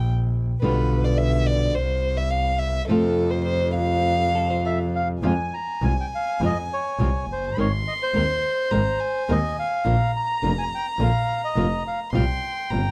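A dark, intimate bowed violin with light vibrato and a soft sul tasto attack carries a sultry, melancholic tango that moves rubato at 105 BPM, playing solo until 5.2 s as the key darkens from F major to F minor, over a clear, biting bowed double bass and a fingerpicked acoustic flamenco guitar, while a clean, hollow-body electric jazz guitar slips in briefly in the background and a reedy, band-limited bandoneon takes the melody from 4.7 s, all captured in a dry, close 1970s-style small-room sound.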